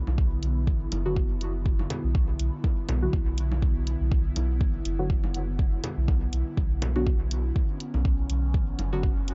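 A breathy, detuned pad with chorus and a round, soft sub bass, both pumping to the sidechain, open this hypnotic, nocturnal dub techno excerpt at 122 BPM in B minor; tape-warm congas with dub echo, an up-front deep kick and a small-room hi-hat soon follow, and at 1.1 s a full-bodied, nasal chord stab with chorus, phaser and dub echo joins over a single Bm chord in a dark, dry mix.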